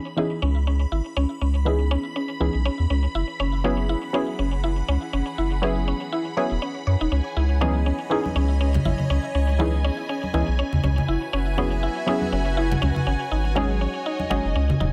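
A small-room ambience surrounds this warm, late-night deep house excerpt, where a round, deep analog bass sits up front beneath muted, detuned dub chord stabs with chorus and delay, and a woody, bright FM pluck plays arpeggios through analog chorus and digital delay. A lush, bowed studio string section with vibrato fades in from the start, while a shimmering vintage string machine adds high violin texture with ensemble chorus. Hard-handed, thick-skinned congas join at 7.6 seconds as the chords move between C#m9 and F#9sus4 before reaching G#7sus4.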